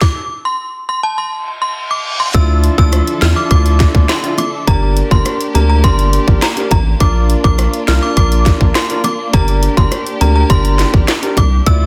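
A bouncy, hypnotic dancehall excerpt opens on a chiming, warbling vintage FM synth chime treated with ensemble chorus and delay over a tight, sharp electronic drum kit of kick, snare, hi-hat, rim clicks and handclaps, and after a reverse cymbal at 1.4 s the full groove arrives at 2.3 s with a deep, saturated sine sub bass up front, a polished grand piano, lush, distant bowed strings with sidechain pumping in the background, and soon after, round, low-tuned bongos played very quietly, all in a dense, heavily limited modern master.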